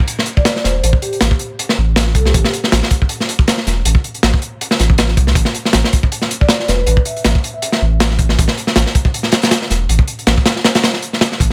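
Dark and frenetic, this drum and bass excerpt rides a crunchy, saturated breakbeat kit with a tight kick and medium-tuned snare sitting up front, while a round, deep dub sub bass enters at 0.6 seconds and sustains underneath. A mellow vibraphone with soft mallets and fast motor vibrato rings in the background in two short phrases, colored by vintage 12-bit sampler grit and dub echo. The mix stays dry and close, and the kick drops out near the end at 10.6 seconds, leaving hi-hat, snare and sub bass.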